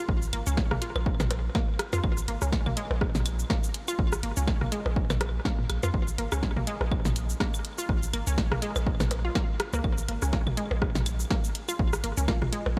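A lightly reverberant, clinical and quirky slice of swung minimal techno, built on an up-front, tape-warm electronic kick, an analog drum machine's hi-hat, shaker and snare, a delayed click kit of claves, blips, rim clicks and toms, a deep sine sub bass with a pitch-drop attack and sidechain pumping, and a squelchy, detuned blip-pluck riff with chorus, delay and pumping, while a buzzing, woody kalimba note with delay enters in the background at 12.3 seconds.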